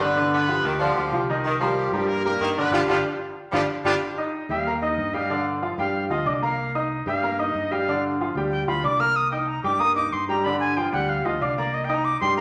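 A brilliant, tight horn section opens this fiery, danceable Latin cut in C minor at 186 BPM, carrying the melody up front while a bright saxophone section with vibrato adds a second line from 0.3 seconds. Underneath, a woody, polished upright piano supplies present accompaniment across its range, and a round, dark fingered electric bass holds the low end with a direct, amped tone. The band hits an accent from 2.7 to 4.0 seconds, after which the horns and saxophones drop out. From 4.5 seconds a reedy jazz flute takes a solo high in its register, airy and crisp with a straight tone and audible chiff. The harmony moves between G and C minor colours, with an Ebadd9 marking the start of the flute passage, and a large studio reverb wraps the whole ensemble in a wet, roomy sound.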